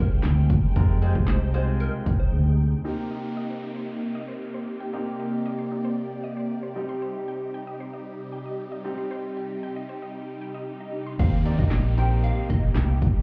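Summery and upbeat, this dance-pop excerpt moves at 115 BPM in a straight 4/4 feel in Eb major, heard muffled as if through a wall with club reverb. It opens on a drop built on Fmadd9, where a punchy analog drum machine with kick, snare, handclaps, hi-hat and crash sits up front beside a dark, foam-muted fingered electric bass, while a catchy, detuned square-wave unison lead carries the melody through phaser and tape echo. A bright grand piano with long sustain and huge, lush supersaw chords with a moving phaser notch run through nearly the whole piece, all pumping against the sidechain. After a silent gap from 2.3 to 2.8 seconds, the drums, bass and lead drop out, and a ring-modulated unison pluck with a noise layer plays arpeggios in the background over Eb6 and then Cm, as a downlifter and swell build toward the return. At 11.2 seconds the drop comes back on Eb6 with the drums, bass and lead rejoining.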